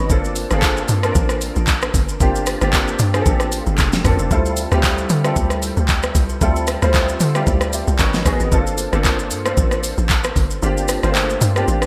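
A swung 4/4 amapiano groove at 114 BPM runs through this late-night, soulful excerpt cut from a longer piece, built on a smooth, up-front electronic R&B kit with a knocking kick, fat snare, hats, rim clicks, handclaps, shaker and toms, all treated with gated reverb; the kick drops out at 10.6 seconds. Beneath it, a tight, punchy FM log drum bass with a noise layer and fast, decaying attack carries the low end, while a worn baby grand piano with long sustain and an ensemble chorus plays up-front accompaniment through Gm11 and Dm11 chords. The sound is bright, with 1980s-style digital production and a light reverb.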